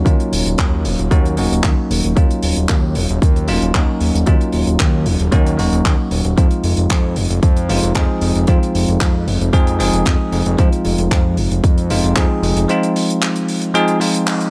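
Sleek and sensual, this 114 BPM nu-disco excerpt sets a bell-like tine electric piano, treated with sidechain pumping, tape echo and a low-pass filter sweep, over a fat, detuned sawtooth analog bass, a punchy layered electronic kick and a dry funk kit of handclaps and hi-hat in a small room. The harmony moves from Ebm7 to Fm7 at 6.4 seconds before a band accent lands at 14.3 seconds.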